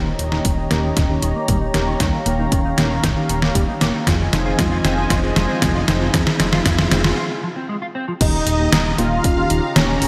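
A straight 4/4 synthwave groove, nocturnal and nostalgic, rides on a punchy overdriven electronic kick and a detuned 8-bit drum machine whose crash, hi-hat and snare carry gated reverb, under a glossy, nasal chorused synth bass, a smooth sawtooth analog pad with sidechain pumping, a tine-like thumb-piano pluck playing arpeggios, dark filtered FM electric piano stabs with delay, a clean fingered electric guitar riff and a faint riser from 4.0 seconds, until a brief break gives way at 8.2 seconds to a thick, bold unison lead melody over shimmering vintage string-machine violins, set in a lush hall reverb with a bright 1980s-style digital sheen.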